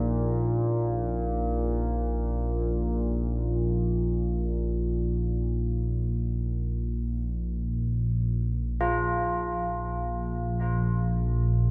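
Ominous and unsettling, this dark ambient drone drifts in free time through a short section cut from a longer piece. An up-front analog drone holds the low register from Bb1 to Bb2 throughout, its evolving blend of sawtooth, pulse wave, sine and wave-folded tones shaped by pulse-width modulation, a slow attack, long release and chorus. A very quiet bronze singing bowl rings on Eb4 beneath it until 8.8 seconds, a metallic, meditative texture with slow beating from a suede striker, as the harmony rests on Bbsus4. At 8.8 seconds old church bells enter with up-front arpeggios around F4, clangorous and bronze with a minor-third overtone, iron-clapper strikes and beating, blurred by a diffuse ambient delay as the harmony moves to Bb5. A wet cathedral reverb with a 5.5-second decay surrounds the whole piece, stretching every sound into a vast, shadowy space.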